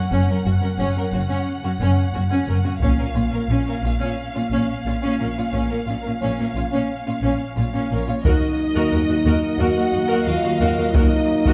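Cinematic, epic orchestral film score in Eb minor at 89 BPM, dark in mood, cut from a longer piece as a build-up that gives way to a new section at 8.2 seconds. Rich, vibrato-laden violins carry the melody over a smooth-topped second violin line, a clear, distant viola accompaniment, and lush bowed cellos and double basses anchoring the low end. Distant taiko drums struck with hard sticks punctuate at 2.8 seconds and return at 8.2 seconds. A dark, roomy French horn section enters with sustained chords just before, at 7.9 seconds, and mellow background trombones join it at 8.2 seconds, all set in a moderate concert hall reverb.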